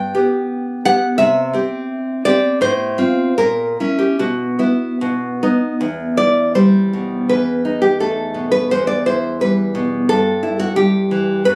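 A bright, fingerpicked nylon-string guitar sits up front in this short cut from a longer romantic piece for solo classical guitar. The mood is melancholic and wistful, and the playing moves with a flexible, rubato feel in 2/4, spanning from E2 up to G5. The opening phrase wanders through shifting harmonies before settling on a dominant chord, and from 5.8 seconds a second passage moves between the home minor chord and its dominant over an E in the bass. The acoustic tone carries a moderate studio reverb, and the sound has the closeness of a phone recording made in the room, with audible studio ambience and some compression. The fragment ends at 11.6 seconds, resting back on the minor harmony.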